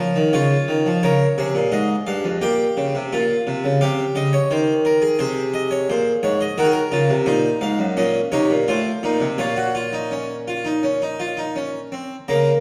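A lone harpsichord carries this driving yet contemplative baroque-style fugue in three voices, moving in a straight 4/4 and spanning its low to high registers as the harmony travels through minor and diminished colours before settling back on the home chord at 9.4 seconds. The French-style instrument, with two sets of strings, sounds airy, plucked and full, sitting forward in the mix even as a wet recital-hall reverb places the listener further back in the room. This brief passage is cut from a longer piece.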